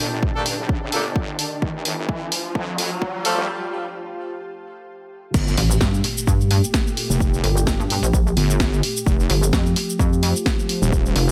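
A heavy, saturated pulsing pluck wobble bass arrives at 5.6 s to lead the drop of this bouncy, swaggering bass house excerpt in G minor at 129 BPM with a swung 16th feel, joining a detuned, up-front wobble bass that has wobbled with chorus and tube grit from the start. A filter-swept build-up opens with a sweeping resonant pad, a blurred granular cloud pad, and bright, loose horn stabs with octave doubling and delay, all breathing with sidechain pumping, while a background riser and impact, a drum fill and a short break set up the drop at 5.3 s. Underneath, a punchy layered electronic kick and a tape-warm house kit with a cracking snare, hi-hat, shaker and crash drive the groove, the whole mix lightly touched by reverb.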